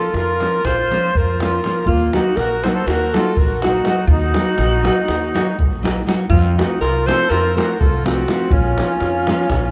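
A brief cut from a longer Balkan wedding-band piece opens at once with alto saxophone, accordion, nylon-string guitar and davul together, and the upright bass joins at 0.1 s. The tune is in a brisk 9/8 at 244 eighth-note beats per minute with a straight feel, and the mood is bittersweet and virtuosic as the harmony moves from Bb minor to Eb minor, then to F at 6.3 s before settling back on Bb minor. The saxophone leads up front as a punchy pop-style solo, warm and smooth on top, with vibrato and subtone, trailed by a diffuse ambient delay. Beneath it the accordion carries a sweet, airy, reedy second line with a light tremolo tuning, and the fingerpicked classical guitar gives full-bodied accompaniment shimmering with lush chorus until 9.5 s. The pizzicato bass sounds woody, dark and thumpy on gut strings, while the tight davul sits distant in a large room. A moderate plate reverb soaks the whole mix in a dreamy haze.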